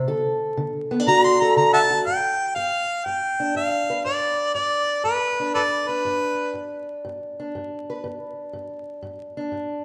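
A dark, boxy parlour steel-string acoustic guitar, fingerpicked and up front, opens this laid-back, swaggering swung acoustic country blues excerpt, and at 1.1 seconds a close-miked harmonica takes the jazz-style solo melody with light vibrato, tongue slaps and scooped notes until 6.5 seconds, while the harmony moves from D to G at 2.1 seconds and a wet recital-hall reverb and vinyl crackle surround the sound.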